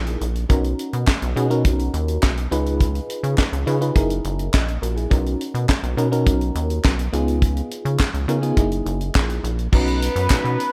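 Early-eighties boogie funk at 104 BPM in B major, smooth and feel-good, where a rubbery, bouncy square-wave bass and a tight, up-front funk kit with a high-tuned snare drive a mellow FM electric piano with tremolo through Bmaj7, C#7 and F#13, while a crisp group handclap sits distant in the background and a fat, detuned analog lead with vibrato enters at 9.7 s, all in a light reverb and studio ambience.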